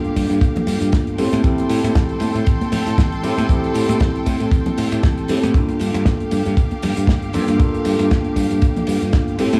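A swung 4/4 groove at 117 BPM drives this groovy, cosmic nu-disco piece in G dorian, with a tight, dry kick up front from 0.2 s, a damped 70s drum kit of finger snaps, hi-hat, ride cymbal and medium-tuned snare with dark cymbals and studio reverb, background tambourine and congas played with hard hands, a growly fingered electric bass, a bell-like tine electric piano colored by phaser and slapback echo, and a lush, focused violin section holding sustained chords with sidechain pumping over Gm7 and Am7, set in a small room ambience.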